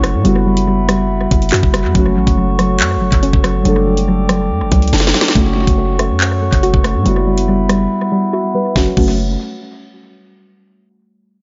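Dark and ominous, this drill excerpt moves at 141 BPM with a half-time feel in F# phrygian, built on an up-front drum kit of knocking kick, sharp snare, metallic hats, handclaps, rim clicks and crash, with a punchy, heavy 808-style bass underneath. Muted, felt-like synth keys and a soft, round pluck playing arpeggios sit alongside a quieter, glassy, ethereal glass harmonica holding sustained chords that circle around F#m and Emadd9 over an F# bass. In a dry, echo-heavy mix with a dulled top end, a drum fill at 4.9 seconds leads into a filter sweep, and a break from 7.9 seconds carries a brief synth keys fill before the final section arrives at 8.8 seconds.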